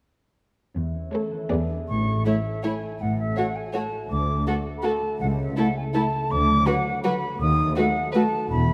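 In a straight 3/4 at 163 BPM, this playful, whimsical film cue in A major, tuned to A4 = 435 Hz, opens at 0.8 seconds with ringing, thumb-plucked harp arpeggios over a bowed cello section bass line. From 1.1 seconds, sul tasto strings with light vibrato join: one violin section carries the melody, a second violin section adds its own line, and a dark viola section fills in the accompaniment. At 1.9 seconds an airy, tongued concert flute enters up high with a second line, and a smooth-topped double bass section deepens the bass, all set in a moderate scoring-stage reverb that gives this quirky excerpt its sense of space.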